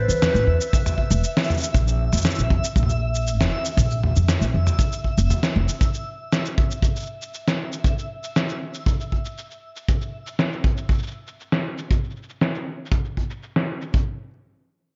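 Wistful and intimate, this folktronica fragment, cut from a longer piece, moves at 118 BPM in a straight 4/4, its dreamy mix soaked in plate reverb with nothing bright up top. A growling clarinet opens the melody for only 0.7 seconds, raspy and subtoned with light vibrato and scooped notes, sounding distant through tape echo, while a barely audible cimbalom rings out hammered, shimmering arpeggios. Up front, a dark, woody, thumpy pizzicato upright bass on gut strings holds the low end over Asus2 and Bb5 chords until 5.7 seconds, colored by tube saturation. A twinkling granular texture with an octave-up FM shimmer, slow attack and long release hovers high and faint until 9.9 seconds. Carrying the groove, a muffled, compressed sampler-style kit of shaker, medium-tuned snare and toms sits up front under low-pass filtering and a filter sweep, joined by a punchy, roomy acoustic kick played with brushes that continues to 14.0 seconds as a brief new section arrives.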